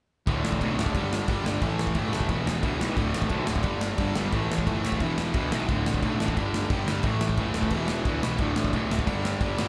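A big, airy rock drum kit sits up front with bright crash cymbals, a medium-tuned snare and a punchy kick, driving a rowdy, energetic punk rock passage at 177 BPM in a straight 4/4, while two bright picked electric guitars (one overdriven, the other distorted, compressed and scooped), a double-tracked fuzz guitar and a growly fuzz-laden picked bass churn through a repeating D5–G5–A5–E5 riff from 0.3 to 9.7 seconds, all captured as a band playing live in one room with light reverb.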